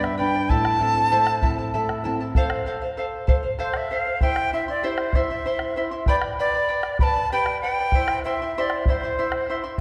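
A large wooden quena carries the melody from the first moment, its breathy, reedy tone touched with vibrato and tongued articulation as it moves between C5 and B5 in this melancholic, earthy Andean folk excerpt. Set in a slow 6/8 at 65 dotted-quarter beats per minute with a straight feel and tuned to A4 = 439 Hz, the piece moves through G, Am, F, C, G and back to C. A fingerpicked charango sits up front beside it, its doubled strings, some in octaves, giving a shimmering, bright accompaniment across the whole passage. A classical nylon-string guitar adds a low, thumb-plucked foundation only until 2.4 s, after which the opening phrase begins again. The bombo keeps a round, close and dry pulse throughout, while a concert hall reverb with a 1.9-second decay surrounds the ensemble.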